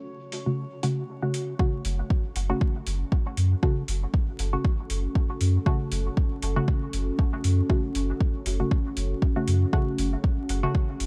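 A dry, low-pass-filtered sound dusted with vinyl crackle carries this hazy, hypnotic dub techno excerpt, where a dark, detuned analog pad with chorus and phaser sustains alongside muted, echoing dub chord stabs, tape-toned metallic hi-hats and a glassy, drifting overtone texture that ends at 1.6 seconds as a filter sweep gives way to an overdriven, up-front kick, followed at 1.8 seconds by a round, soft sub bass pumping under the sidechain.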